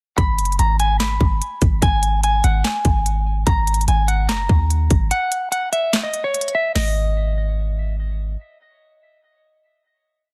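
The sound is dense and heavily limited, with little reverb and some lossy compression artefacts. This is a short, complete hip hop piece in a trap style at 146 BPM in 4/4 with a half-time feel, hard-hitting and melancholic in G# minor. A dark, clean electric guitar, fingered and treated with delay, plays a looping melody up front that repeats like a sampled loop over a G#m to F# progression. Beneath it, a deep, boomy 808-style bass with a fast attack and sine-like tone holds long sub-bass notes that follow the kick, with pitch slides. The electronic trap kit drives a half-time beat of hard-clipped kick, a sharp snare layered with handclaps, and crisp hi-hats with fast rolls. A break arrives at 5.1 seconds, and the hook gives way at 6.8 seconds to a final G#5 chord, with the bass ringing until 8.4 seconds.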